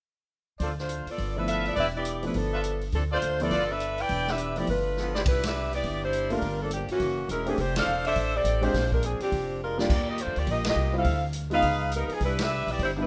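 At 0.6 seconds a big band swing passage kicks off at a brisk 207 BPM in C major, with a tight, close-miked saxophone section carrying the melody over pizzicato upright bass and a swinging drum kit of ride, hi-hat, snare, punchy kick and crash. A brilliant trumpet section adds stabs with light vibrato and a soft attack, dropping out at 5.2 seconds after a drum fill, while a warm baby grand piano joins the accompaniment at 1.4 seconds. From there the harmony moves from a vamp cycling through Dm7, G13, Em7 and G13 into richer, shifting colours, with another drum fill and several full-band accents driving the energetic, swinging mood. The saxophones sit up front with a clear tone, the woody bass underpins the groove, and the kit has a natural studio-room sound. Light reverb ties the ensemble together in this passage cut from a longer piece.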